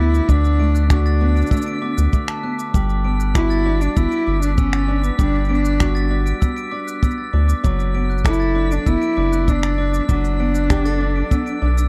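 Folktronica with a playful, hopeful mood, where a nasal bowed cello carries the melody over fingerpicked nylon-string guitar arpeggios under a filter sweep, a mellow glockenspiel played with soft plastic mallets adds a second line, and all three are touched with tape echo, while a round analog bass sits up front, a faint twinkling granular texture shimmers in the background, overdriven electronic cabasa and finger snaps join at 0.1 seconds followed by a tight kick drum from 0.3 seconds, and the whole is a dry, close 1970s-style studio recording cut from a longer piece.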